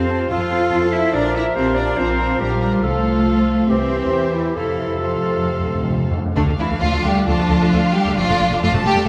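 Restless and urgent, this fast romantic orchestral movement surges forward with a rubato feel, cut from a longer piece. A dark violin section carries the melody in the background with vibrato and portamento, while a second, smoother violin section plays a lush inner line beneath it alongside a hollow, very quiet flute group, a distant clarinet and a cor anglais with light vibrato. Clear violas add accompaniment with a mellow bassoon, and a dark, roomy French horn section holds sustained chords, the winds and horns all falling away at 6.1 seconds. Underneath, a rich, close cello section and a focused double bass section form a full bowed foundation that runs throughout. Timpani played with medium mallets enter at 2.8 seconds and close the opening section with a fill, before the strings carry on alone into a darker passage on D minor, all set in a moderate scoring-stage reverb.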